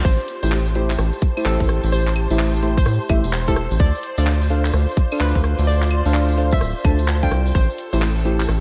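Skippy and moody, this swung two-step UK garage excerpt moves between Am7 and Dm7 as a tight, up-front electronic kick and a rubbery square bass anchor a garage kit of claves, handclaps, hats and rim clicks that joins at 0.3 seconds, a jingly tambourine sits in the background, dark nasal chord stabs with 12-bit sampler grit and diffuse ambient delay arrive at 0.4 seconds, a detuned, hollow square pluck carries the melody through chorus and delay, and a silky string machine and a warbling, nostalgic tape-like pad pump with sidechain behind them, over vinyl crackle and light reverb.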